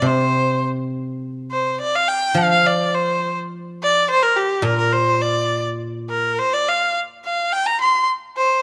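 Moving in a free, rubato two-beat pulse, this festive, pastoral fragment of Chinese traditional music sets a single bowed erhu up front, singing a clear, focused melody rich in vibrato and portamento, while a mellow guzheng played with fingerpicks rings out silvery low accompaniment until 6.4 seconds, leaving the erhu alone to 8.6 seconds in a moderate recital-hall reverb.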